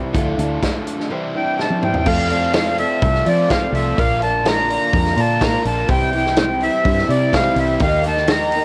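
A lightly reverberant home cassette recording, this short excerpt of jangly, open-road folk rock and heartland rock in F major at 125 BPM sets a woody, old-stringed picked acoustic guitar and a dark, double-tracked overdriven electric guitar riff over round, foam-muted fingered bass and an up-front natural country drum kit with a punchy kick, whose fill at 1.6 seconds leads into the second section at 2.1 seconds, while a reedy, close-miked accordion carries the melody from 1.4 seconds through an analog delay.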